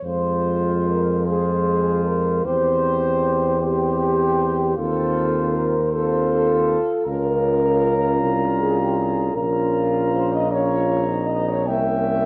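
A solemn, melancholic classical brass band piece in a hymn-like style, this excerpt moves slowly at 52 BPM in 12/8 with a rubato feel in F minor, its harmony turning from Fm through C/E, F7/Eb and Bbm/Db to a closing C7b9. A warm, vintage-toned flugelhorn with light vibrato carries the melody over a distant, roomy French horn section on the second line, while a bright trombone section and a dark, soft-edged trombone set back in the mix fill in the accompaniment above an up-front, clear tuba bass. The whole ensemble sits in a moderate scoring-stage reverb and is coloured by worn, warbling old cassette tape with a drifting pitch.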